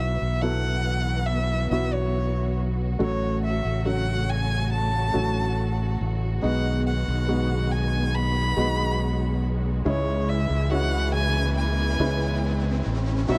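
A bright, punchy fingered electric bass sits up front in this melancholic, emotional pop ballad in C# minor at 70 BPM, cut from a longer piece, with a clear, woody upright piano providing accompaniment and a lush studio string section sustaining chords through Bsus4, F#m/A, G#m7/B and C#m. Above them a single bowed violin carries a focused, smooth-topped melody with vibrato and tape echo, while the strings add expressive portamento. A very quiet electronic riser and downlifter enters at 9.3 seconds, all within a dry, close 1970s-style studio sound.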